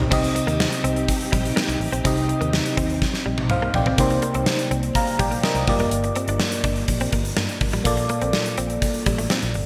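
Urgent and dramatic, this 1980s-style pop passage in C dorian drives forward at 124 BPM in a straight 4/4. A glassy FM electric piano with a bell-like attack and chorus sits up front, while a gated drum kit with a punchy kick, a medium-tuned snare and bright cymbals plays through its gated reverb. Beneath them, a dark, foam-muted fingered electric bass gives a round low end, and a clean, direct-recorded electric guitar plays a compressed, picked riff in the background through analog chorus and delay. A silky, warbling string machine holds soft sustained chords with ensemble chorus until 3.9 s, just as a drum fill from 3.0 s leads into the next section at 4.0 s. The harmony moves from Cm to Cm7, Gm7 and Bbmaj7, all set in a lush hall reverb with bright 1980s-style digital production.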